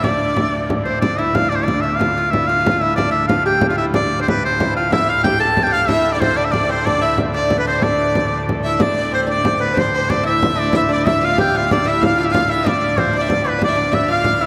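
A driving, ancient-feeling medieval dance in D dorian at 124 BPM in 6/8, cut from a longer piece, opens with a bright, up-front shawm playing a folk-style solo melody rich in vibrato and scooped notes. Beneath it sit a majestic, brilliant full-organ drone, a delicate fingerpicked gut-string lute, a close, dry frame drum, and a nasal, earthy bowed fiddle that drops out at 0.7 seconds and returns at 4.9 seconds, the ensemble ringing through a vast, echoing cathedral space.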